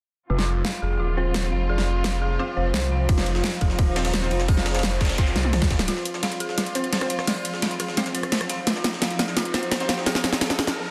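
Aggressive and mechanical, this excerpt of dark technical drum and bass runs at 172 BPM. A snarling, growling saw bass with distortion and overdrive drives the first half until 5.9 s alongside a tight, overdriven electronic kick, while a dubstep kit with a huge snare and metallic hats sits up front over a gritty, high-tuned breakbeat sampler kit from 3.1 s. Clear, biting symphonic strings, an eerie inharmonic FM bell playing arpeggios with tape echo, and a warbling lo-fi pad all pump with the sidechain. Bold orchestra-hit-like synth stabs under a filter sweep and a very quiet noise sweep and riser join them, leading into a drum fill and build-up from 5.9 s in a dense, heavily limited mix.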